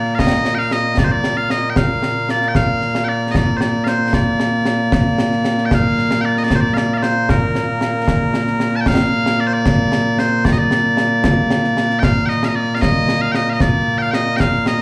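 Heard live through a club PA in a moderately reverberant room, this excerpt of stirring, proud Scottish traditional pipe music moves in a straight 6/8 at 76 BPM in Bb major. Loud bagpipes carry the continuous melody up front, their piercing tone dressed in plate reverb and slapback echo. Acoustic concert snare and bass drum enter at 0.2 s, close and dry with bright cymbals and their own slapback echo, and the tune comes round a second time at 8.9 s.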